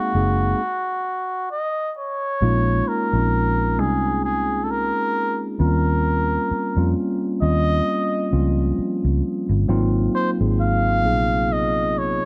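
R&B with a neo-soul lean, this short cut from a longer piece carries a late-night, sultry mood at a slow, swung pace. A cup-muted trumpet carries the melody with a veiled, breathy, whispered tone and soft attack, close-miked and intimate, sitting up front with plate reverb. A mellow tine electric piano supplies the accompaniment, clean and direct, also touched by plate reverb. Beneath them, a vintage fingered electric bass gives a dark, round, foam-muted low end. The opening Gbmaj13 gives way to a stop from 0.6 to 2.4 seconds before the harmony settles into Bbm9, then moves through Eb9 and Ab9, all in a lightly reverberant space.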